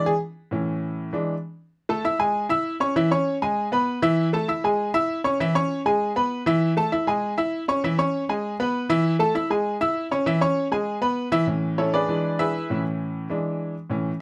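A straight 4/4 pulse at a brisk 197 BPM drives this short Latin excerpt, and its mood is festive and joyful from the first beat. A single upright piano carries everything, ranging from A2 up to E6, with a bright, woody tone and audible action noise that keep it intimate and up front. The opening passage rocks between E7 and A. From 1.7 seconds a longer middle stretch cycles through A5, E and E6 chords. The E7 and A harmony returns at 11.5 seconds and closes the fragment. Close, detailed microphones and light reverb give the instrument a present, brilliant sound, and the tuning sits slightly low at A4 = 438 Hz.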